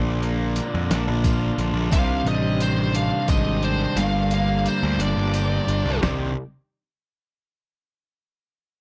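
A slow, straight 6/8 sway drives this bittersweet, restless fragment of indie rock, cut from a longer piece. A sampler-style trip hop kit sets the groove with hi-hat, toms, a thumpy kick and a medium-tuned snare, its compressed, pitched-down, gritty sound tape-warm and re-recorded in a small room, while a jingly acoustic tambourine sits close and dry in the background. Underneath, a punchy fuzz bass sits up front, overdriven and amped, as a cranked stack guitar grinds out a bright, overdriven riff beside a twangy twelve-string electric guitar whose clean, compressed riff sits farther back with lush chorus and slapback echo. A vintage, buzzy combo organ holds very quiet sustained chords with light vibrato. At 1.9 seconds a bluesy lead guitar enters with a distorted solo melody carrying slapback echo, and from 4.0 seconds the kick and snare drop out beneath it. The whole recording is dry and close, with the intimate feel of a 1970s studio.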